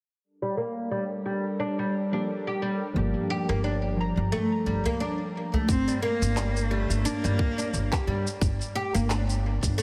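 Organic downtempo in G minor at 88 BPM with a mystical mood, cut from a longer piece, opens on bright, woody oud arpeggios carrying a filter sweep and shimmer reverb over a tense, string-like drone, soon joined by soft, muted felt-like synth keys with vintage 12-bit grit, then by a dark pizzicato upright bass at 3.0 s and a brief deep, dry udu, before a rich bowed cello melody with vibrato enters at 5.7 s alongside a tight, up-front electronic kick drum and electronic shaker and handclaps, the mix sitting in an echo chamber with a heavily compressed, radio-like sound.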